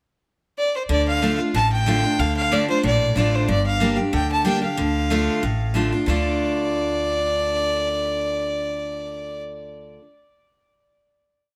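A lone bowed fiddle opens this short, haunting bluegrass piece at 0.6 s with a brief pickup, its clear, nasal tone touched by light vibrato and a tape echo. At 0.9 s the picked steel-string acoustic guitar and the plucked upright bass join it. The guitar sits up front with a bright, full-bodied dreadnought sound, alternating bass notes and strums. The upright bass is woody and growly, laying down a two-beat root-and-fifth pattern with walk-ups beneath a lightly swung, brisk feel in minor. The fiddle's earthy, motif-based melody unfolds in period phrases over a single lonesome passage before the trio settles onto a final chord. The fiddle lets go at 9.4 s while the guitar and bass ring out in moderate studio ambience.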